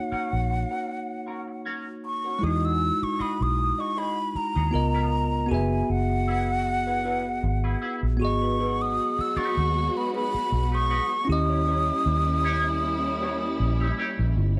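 A breathy, close-miked flute carries the melody over bell-like tine electric piano from the opening, bringing a bittersweet, smooth feel to this lush 1970s-style soul excerpt at 78 BPM with lightly swung sixteenths and a slapback echo on the flute line. A round, punchy muted bass sits up front beneath a semi-hollow electric guitar riff colored by wah and analog chorus, all moving through chords such as D#m7, Emaj9 and G#m7. At 8.6 seconds a bowed string section enters with expressive vibrato and sustained chords, while light studio reverb softens the whole mix.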